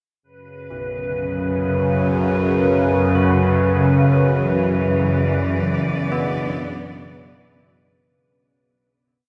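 Dark ambient drone at 61 BPM, vast and ominous, built on a tense, sawtooth-edged bowed-like drone with phaser and vibrato held up front over an F#5 chord, while an icy, crystalline glass pad with chorus sustains a high B4 above it. Bronze carillon bells fade in from the background at 0.7 seconds, their delayed arpeggios drifting in three slow loops of unequal length. At 4.2 seconds a clear, smooth studio cello section enters with bowed sustained chords as the harmony moves to B minor, all within a huge, wet reverb carrying a 7.5-second tail.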